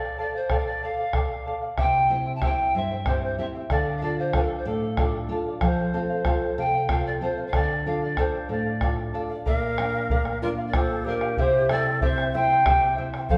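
This Andean folk piece, cut from a longer performance, moves at a slow 62 BPM in a straight 6/8 and carries a wistful, melancholic mood in D minor. From the start, a bamboo pan flute sings the airy, expressive melody with a straight, tongued tone and a touch of chiff, set slightly distant, while a mellow fingerpicked charango adds a shimmering accompaniment from its double strings, some of them octave-doubled. A deep, dark bombo enters at 0.5 seconds, sitting up front with a small-room character, and a nylon-string guitar joins at 1.8 seconds with warm, deep classical fingerpicking. At 9.5 seconds, as the harmony shifts to Bb and then C, a large quena adds a bright, reedy second line with vibrato, a crisp attack and lifted highs. The ensemble plays live in one room, wrapped in a large, wet studio reverb.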